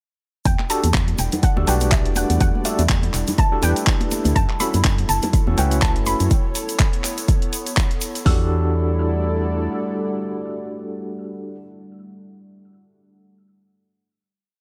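An overdriven deep house drum kit drives this warm, deep piece with a four-on-the-floor kick, open and closed hats and claps, joined by a hollow, organ-like FM bass playing a funky syncopated line and, further back, a grainy egg shaker and ringing, high-tuned congas. Barky electric piano stabs with fast tremolo and tape echo, a soft round pluck tracing a call-phrase motif through chorus and sampler grit, and two sidechain-pumped pads, one dark and warbling, one airy and breathy, move from Em11 through F#m7 and Bsus2. The drums drop out near 8.3 s, when the piece settles on a final Em11; the bass stops at 9.7 s while the pads sustain the chord, the keys keep stabbing and the pluck plays on over it.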